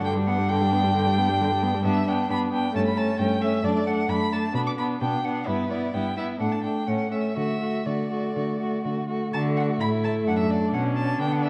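Cheerful and spirited, this quick, rubato classical-period movement for string quartet is cut from a longer piece, with all four players bowing throughout its 11.5 seconds. The rich first violin carries the melody from a distant spot high above the focused, warm second line, while the expressive viola slides with portamento through its accompaniment, and the smooth, even cello sits close and up front in the bass, each voice shaded with vibrato. A wet scoring-stage reverb and a softened top end give the quartet a spacious, mellow glow, and a new section arrives at 9.3 seconds.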